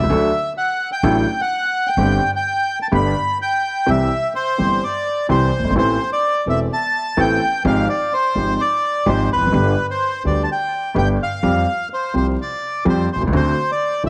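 Playful and passionate, this tango excerpt moves at 127 BPM in 4/4 with a rubato feel, centred in C major. A reedy bandoneon carries the melody up front, its line set in a tape echo, while an intimate upright piano supplies the accompaniment with audible action noise and a natural, woody tone. Beneath them, an acoustic upright bass with steel strings plays pizzicato, giving a dark, thumpy foundation. All three parts play from start to finish, and the music shifts into a new section at 3.9 seconds, where the harmony moves through Amadd9 and Fmadd9/Ab before arriving at D7 near the close. Light reverb and a small room ambience surround the players, and a layer of vinyl crackle lends the recording an aged character.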